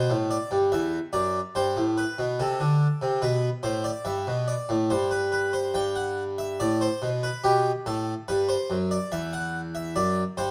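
A solo harpsichord opens a baroque-style two-part invention at 71 BPM in a straight 4/4, elegant and lively, its plucked, brilliant tone set up front by close, detailed microphones with only light reverb. The first section moves from A minor through E minor before the music settles into G major at 5.7 seconds, the instrument's full, French-style voice with three sets of strings spanning E2 to G5. This short cut from a longer piece ends at 10.5 seconds.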